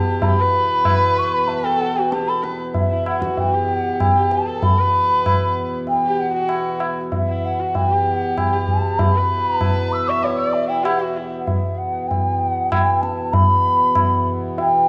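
Meditative and full of longing, this Hindustani classical passage in 7/4 sets a pure, hollow bansuri melody with vibrato and a distant placement over a reedy, breathing harmonium drone. A bowed sarangi carries a smooth, gliding second line, expressive with portamento and sympathetic strings, until 11.3 seconds, while low-tuned tabla with a short ring sits up front. A moderate stage reverb surrounds the music, which is cut from a longer performance.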